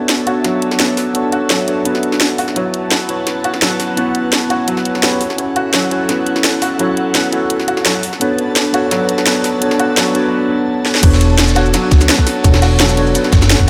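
A mellow tine electric piano sits up front with lush chorus and tape echo in this rolling excerpt of liquid drum and bass, joined by an airy, breathy pad with chorus and phaser in the background and soft arpeggios from a felt-muted upright piano through low-pass filter and delay. Over this build-up, an overdriven garage drum kit carries a cracking snare, hi-hat, shaker and crash, and a drum fill at 10.9 seconds leads into the drop at 11.0 seconds. At the drop, a woody, thumpy pizzicato upright bass and a tight, overdriven electronic kick enter alongside a gritty, dark-cymbaled breakbeat kit in the background, all within a lush hall reverb over chords moving from E13sus4 through A69, F#m7 and Bm7.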